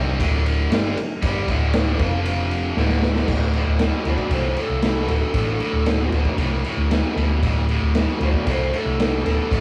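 A driving, swaggering blues rock power trio cut with a southern rock streak, this excerpt comes from a longer piece and moves in a straight 4/4. A bright, overdriven, double-tracked electric guitar riff sits up front from the start over power chords on D and F. Beneath it, a vintage fingered bass with a foam-muted, round and punchy tone holds down the low end, joined at 0.2 seconds by a raw garage drum kit with a punchy kick, medium-tuned snare, crash and ride, and a rolled-off top heard in a bright stone room. A drum fill at 2.8 seconds sets up the second section at 3.3 seconds, where a smooth, dark, overdriven lead guitar enters at 4.1 seconds with a picked solo. Light reverb and a rough rehearsal-room sound give the whole take a raw feel.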